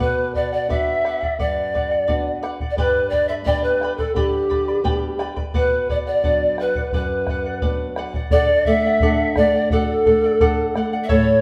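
Festive and earthy, this Andean folk excerpt sets a pure, crisply attacked pan flute melody with expressive vibrato over an airy, distant second pan flute line touched with slapback echo, while a bright, shimmering fingerpicked charango and a dark, boxy thumb-plucked flamenco guitar pick out the Bm, G and D changes above a round, close bombo, the whole ensemble playing live in a wet stone room.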